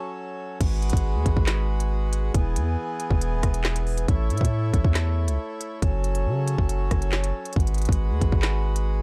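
A long, deep 808-style bass with a sine-like, mellow tone and fast attack sits up front in this dark, menacing drill excerpt at 138 BPM in a half-time feel, entering at 0.6 seconds alongside an electronic drum kit with a hard-clipped kick, woody snare, crisp hats, handclaps, rim clicks and crash cymbal. A reedy, breathing hand-pumped harmonium opens the piece alone, holding sustained chords in G# phrygian that move through F#m, G#m7, E and A beneath the beat. The production is dry, dark and warm, with the bass and drums pushed forward over the softer harmonium.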